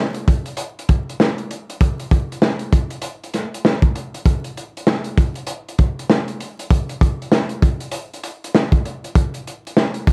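A vinyl crackle opens this short hip hop cut before a crunchy breakbeat drum kit arrives at 0.1 seconds and plays through to the end at 10.1 seconds. The kit of hi-hat, kick drum and snare drum rides a relaxed 4/4 groove with a noticeable swing on the sixteenths, giving it a laid-back yet confident strut. Recorded acoustically in a small room, the drums sit up front and sound dark and gritty, with a saturated edge and a rolled-off top. A punchy kick anchors the beat while a medium-tuned snare cuts through with a smooth body. Light reverb and the steady crackle wrap the loop in a nostalgic, dusty atmosphere.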